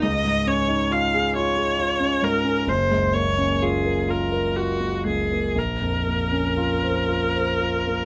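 Mysterious and wistful, this short excerpt from a longer impressionist classical duo for viola and grand piano drifts at a slow, rubato pace of about 39 to 46 dotted-quarter beats per minute in 12/8. The bowed viola carries the melody throughout, its tone rich, smooth and even, colored by vibrato, sounding both up front and curiously distant. Beneath it the concert grand supplies the accompaniment across all 8.1 seconds, reaching down into a deep bass with an intimate, vintage character and audible action noise. The harmony moves from Dbadd9 to Gbmaj7 at 2.7 seconds and settles on Bbmadd9 at 5.6 seconds, lending the passage a hazy, suspended color. Close, detailed microphones and light reverb keep the sound clear while giving the two instruments a gentle sense of space.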